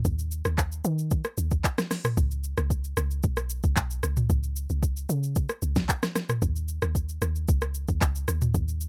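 A deep, round log drum bass anchors this hypnotic, late-night amapiano excerpt, its dark, percussive FM tone carrying a noise layer and a fast attack that decays, sitting up front from B1 to D#3. Beside it, an electronic R&B drum kit plays throughout the 8.9 seconds, its soft kick, fat snare, metallic hats, handclaps, rim click, shaker and toms given a gritty overdrive. The dry, close sound keeps both parts present and direct in a straight 4/4 groove.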